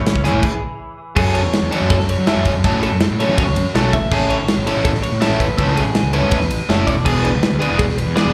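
Intricate and bright, this math rock and midwest emo excerpt moves at 163 BPM in A major, opening with a stop from 0.4 to 1.2 seconds before settling into chords that pass from F#m7 to Amaj9 and E7. A clean, twangy electric guitar with chorus and slapback echo plays accompaniment only until 1.9 seconds, while a compressed twelve-string electric guitar spins high arpeggios through digital delay, and an up-front, double-tracked overdriven guitar with a biting edge carries the riff. Underneath, a fuzzy, overdriven picked bass and a tight acoustic drum kit with kick, snare, hi-hat, ride and crash drive the track, all heard as a live gig through the venue's PA with a touch of club reverb.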